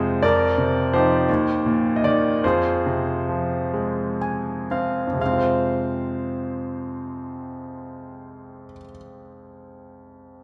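Classical solo piano in a lyrical, dark and wistful vein, this brief excerpt moves in a slow, rubato 6/8 at around 38-58 BPM in F dorian, drawn from a longer piece. A bright baby grand carries everything alone, its brilliant, intimate tone sitting up front with audible action noise and long sustain, ranging from Eb2 to Ab5 as the harmony passes from Bbadd9/F through Eb to Fm. The tempo slows through the opening phrase, a piano fill arrives at 3.7 seconds, and a new section begins at 5.2 seconds, all within a church or concert-hall reverb with a faint mains hum beneath.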